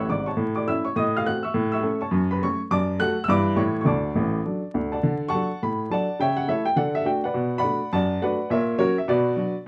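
A brisk 207 BPM swing in 4/4, its eighth notes gently lilting, drives this exuberant stride piano cut in D major, lifted from a longer piece. A lone upright piano carries the whole performance from 0.0 to 9.6 seconds, opening with a short fill before settling into its stride. Its tone is woody, with a short sustain, and it sits up front, ranging from deep bass notes to bright high ones. The harmony moves from A through a diminished passing chord into F#m and D, then turns toward Bm with an F#7/A# leading into it near the close. A moderate studio ambience and a vinyl crackle give it the air of a live take in a single room.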